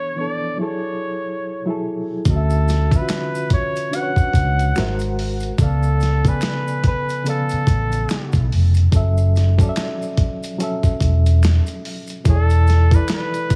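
R&B with a neo-soul lean, this late-night, sultry excerpt moves at 72 BPM in 4/4 with a swung sixteenth feel, in F# minor. A warm flugelhorn carries the melody throughout, its vibrato and scooped notes given a slapback echo, while a reedy, slightly out-of-tune electric piano with fast tremolo plays accompaniment through its built-in speakers. The opening 2.3 seconds are a break for just these two, moving from E7sus4 to F#m9 before the groove arrives. At 2.3 seconds a gritty, sampler-style drum kit enters up front with a thumpy kick and medium-tuned snare, joined by a dark, round, foam-muted electric bass and a faint layer of maracas and handclaps in the background. The harmony drifts through Dmaj9, G#9 and C#7b9b13 to F#m7, returning to E7sus4 near the end, all within a dry, heavily compressed radio sound.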